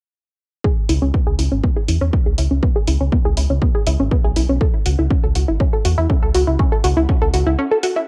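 Hypnotic and cinematic, this short melodic techno passage, cut from a longer piece, moves with a steady, straight 4/4 feel and a dry, close home-cassette sound. A lush, detuned unison pluck carries the arpeggios from 0.6 seconds, its punchy attack and short decay colored by a moving notch, a noise layer, analog delay and sidechain pumping. Underneath, a round, deep analog bass sits up front, mellow and evolving, with its own sidechain pump, alongside a heavy, layered electronic kick with a tape-softened edge. An analog electronic hi-hat, also tinted by cassette, sits lower in the mix. Filter sweeps run across both the bass and the arpeggio sound as the harmony shifts from C#m7 to F#7(no3), before a brief break at 7.6 seconds.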